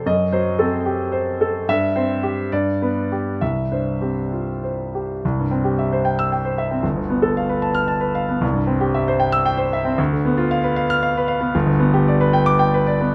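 A romantic classical character piece for solo piano in C major, this passionate, hopeful passage moves in a flexible 6/8 at roughly 64-78 BPM, its rubato letting phrases breathe as the harmony opens on an F#dim7 before settling toward C and later drifting through a G9 and back. The grand piano sounds clear, polished and up front across a range from G1 to F6, captured by close, detailed microphones with a light touch of reverb. Cut from a longer work, the opening phrase gives way near 5.2 seconds to a contrasting second idea that carries through to 13.1 seconds.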